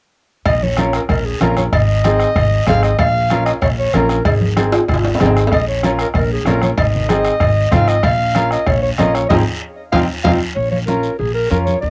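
Danceable and fiery, this cumbia passage sets a present, classical-style clarinet with tape echo on the melody over an up-front, woody pizzicato upright bass, while a brilliant upright piano with plate reverb supplies the accompaniment. Thick-skinned congas, a soft-beater bombo, ringing cowbell and timbales and a faint, raspy guiro drive the groove, with drum fills near 4.7 and 9.8 seconds and a band accent leading into a short new section at 10.6 seconds. It was recorded at home on cassette with moderate booth ambience, and the bombo and guiro carry a vintage, band-limited edge.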